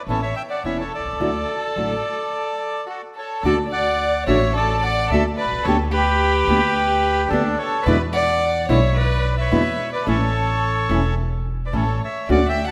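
Set at 108 BPM in 4/4 with a loose, rubato feel, this short tango cut from a longer piece in D major moves with a playful, passionate spirit. A reedy, bright bandoneon carries the melody up front from the opening moment, while a single bowed violin, played sul tasto with light vibrato, a soft attack and an airy bow, traces an intimate second line close by. A small-sounding nylon-string guitar, fingerpicked, provides the accompaniment, and a woody pizzicato upright bass on steel strings sits forward in the mix as the foundation. After the opening phrase the band halts for a stop from 2.3 to 3.4 seconds, then the tune restarts and runs through D, Gadd9/D and E7 before settling on A. The whole is heard on a moderate scoring stage with a 1.8-second reverb that gives the ensemble a sense of space.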